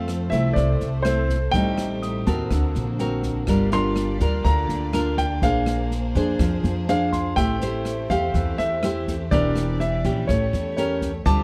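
Bossa nova at 123 BPM, intimate and wistful, with a grand piano carrying the melody through plate reverb and audible action noise over fingerpicked nylon-string guitar with finger squeak, growly pizzicato upright bass, an airy small-room jazz kit of boomy kick, rim click and snare, a lush bowed violin section in the background, and a bright tine electric piano that drops out between 3.5 and 7.1 seconds, moving through chords from Fmaj7 to A7b9 in a short cut from a longer piece.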